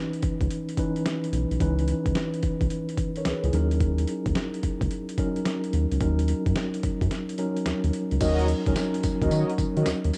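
Slick and punchy, this short R&B cut in the new jack swing style rides a swung groove, with a mellow, clean tine electric piano up front over a deep, round, dark analog bass. A gritty, overdriven sampler-style drum kit, pitched down and compressed with a thumpy kick, medium-tuned snare, hi-hat, tambourine and crash, carries a cassette-tape crunch across a dry home recording, moving from C#m9 to D#m7 before a break at 7.1 seconds. At 8.2 seconds brassy, detuned synth stabs with chorus, vibrato and a filter sweep arrive for the closing stretch.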